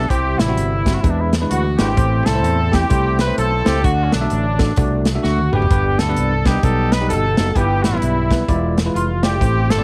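A clear, vibrato-laced trumpet and a tight horn section sitting in the background open this uplifting, hopeful uptempo gospel passage at 129 BPM with a swung 4/4 feel, joined at once by a barky, bell-like tine electric piano and a bright, punchy fingered electric bass, while an airy country drum kit with a punchy kick enters at 0.1 seconds and plays a fill at 5.2 seconds, the trumpet, horns and drums carrying a cassette-tape tint within a light small-room reverb as the chords move from C through E7 and Am toward a closing E7b9.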